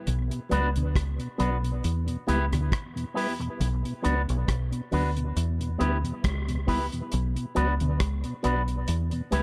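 Spacious and deep, this short dub reggae excerpt moves at an unhurried pace with a light swing, circling between two minor chords. A dark, round fingered electric bass sits up front from the first moment, its foam-muted tone carrying the low end. Alongside it, a dry reggae drum kit with a tight kick, hi-hat and rim click keeps a smooth, rolled-off sound. A mellow tonewheel organ joins at 0.3 seconds, clean and round, colored by chorus vibrato, a slow rotary speaker and tape echo. At 0.5 seconds a bright, twangy electric guitar enters, picked through an envelope filter and trailed by tape echo, standing forward in the mix. Light reverb and a studio ambience give the whole a roomy feel.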